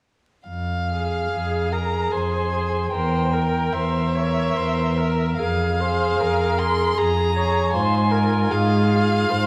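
At 0.5 s a muted violin sings a yearning, vibrato-rich melody up front over a bowed cello bass with light vibrato and soft attacks, opening a slow, elegiac string quartet movement in F minor at 74 BPM in 3/4, its rubato pulse uneven. A second con sordino violin adds a veiled line beneath at 0.9 s, and a distant viola with portamento joins at 1.3 s, all four voices dark in tone as the harmony moves from F minor through E diminished seventh and back. The reverb of a recital hall and a layer of vinyl crackle surround this short passage cut from a longer piece.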